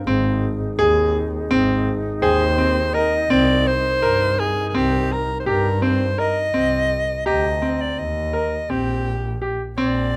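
A clear soprano saxophone enters at 2.2 seconds with a jazz-style solo melody full of vibrato and scooped notes, set over brilliant grand piano arpeggios, a rich bowed double bass with expressive portamento, and a background of airy, hollow flute chords and delicate, bell-like celesta, in this pensive yet urgent contemporary chamber piece in 9/8 at 167 BPM in C minor, cut from a longer work and heard as a rough home demo mix with light reverb.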